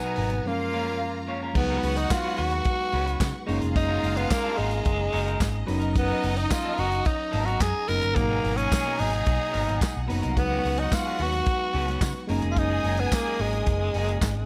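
Driving and sultry, this disco cut, taken from a longer piece, is led by a growling tenor saxophone that sits up front with a raspy, gritty edge, a smooth top and pop-style vibrato as it carries the melody. Beneath it, a picked electric bass run through an envelope filter sounds amped and up front, entering at 0.2 s alongside a soul drum kit with a tight kick, medium-tuned snare, dark cymbals, hi-hat, crash and handclaps, all dry with a rolled-off top. A jingly, close tambourine joins at 2.1 s in the background. A worn, slightly out-of-tune tine electric piano through a combo amp and a clean, picked electric guitar fill in the accompaniment, while a bright, intense studio string section plays a bowed second line behind the saxophone. A distant, lush symphonic string section holds focused sustained chords through a progression that moves from F#maj7 through C#7sus4, Bmaj7/F# and G#m9, all set in a small room.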